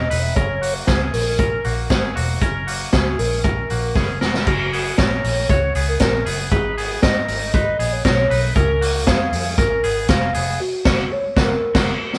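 A warbling, nostalgic lead with a square-and-sawtooth tone carries the melody of this bright, youthful slice of jangly indie pop, its detuned, sustained notes softened by chorus, while a clean, picked electric guitar spins twangy, compressed arpeggios through a vibrato effect. A dark, foam-muted electric bass plays fingered lines with a round, punchy tone, and an up-front vintage acoustic drum kit drives the straight 4/4 groove at 117 BPM with a punchy kick, a high-tuned snare, hi-hat and dusky crash cymbals. The drums sit mid-forward with a rolled-off top, and they are the loudest part of the band. A drum fill at 4.0 seconds carries the music into its second section, where the harmony moves from the opening F# through G#m and C#6 back to F#. The band hits an accent together from 10.6 seconds, and the whole thing has the feel of a group playing live in one studio room with moderate reverb, cut from a longer piece.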